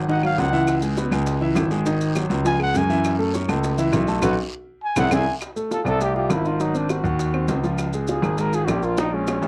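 Lively and sophisticated, this short Afro-Cuban jazz cut puts a dark, breathy trumpet up front with whispered, scooped notes over a woody upright piano with audible action noise and a deep concert grand carrying the bass, while round low-tuned bongos, dry claves, raspy guiro and grainy maracas sit in a close, dry 1970s-style studio sound, with a band accent and drum fill from 4.2 to 5.4 seconds.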